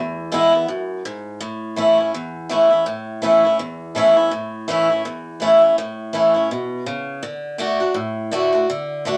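Rock in A major at 165 BPM with a swung eighth-note feel, this retro, upbeat fragment of a longer piece features a lone picked swing-style acoustic guitar, bright, boxy and up front, ranging from E2 to F#4 over an E chord that moves to A at 1.4 seconds and D at 7.2 seconds, set in a moderate studio reverb.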